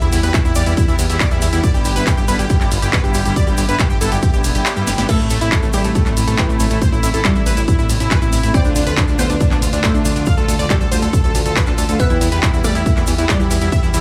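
Uplifting trance in A minor at 139 BPM, this euphoric, driving clip from a longer piece moves in a straight 4/4 over chords that shift from Em and G6 to Am, Dm and back to Em. A heavy, tape-warm electronic kick sits up front, joined by a techno kit with a punchy snare, handclaps, hats, ride and crash, both re-recorded in a small room. A fat, detuned sawtooth bass and a punchy unison supersaw stab carrying the melody both pump against the kick, as do the dark, veiled, con sordino strings holding sustained chords beneath them. A grainy egg shaker ticks along in the background throughout. The kick drops out from 4.7 to 5.1 seconds around a drum fill at 4.9, and at 5.1 seconds a glassy, crystalline wavetable pluck enters as a second line, set back in the mix with chorus and tape echo.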